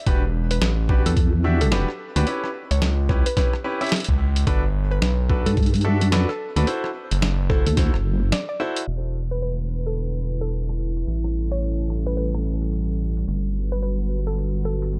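A woody, wave-folded pluck melody opens this swaggering, playful glitch hop excerpt with a swung groove, soon joined by clear grand piano stabs roughened with vintage sampler grit and sidechain pumping, a saturated, aggressive driven synth bass, a pitched-down, tape-warm boom bap kit of low-passed hi-hat, rim click and snare, and a thumpy electronic kick, while a nasal vowel-sweep wobble bass enters at 1.1 s; after a brief break, a deep, detuned analog pad carries the chords from 8.9 s as a filter sweep moves over the drums, all set in a dark, low-passed digital ambience.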